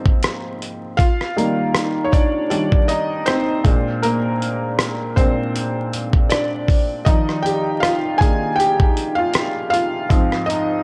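Cosy and nostalgic, this lo-fi hip hop piece moves at 79 BPM in Eb major with a gentle swing, and it is cut from a longer piece. A felt-muted upright piano sits up front, soft and intimate with audible action noise, carrying the chords through the whole 10.8 seconds. A dusty soul sampler-style drum kit of hi-hat, kick drum and rim click adds gritty 12-bit texture and a thumpy kick, all under light reverb and vinyl crackle.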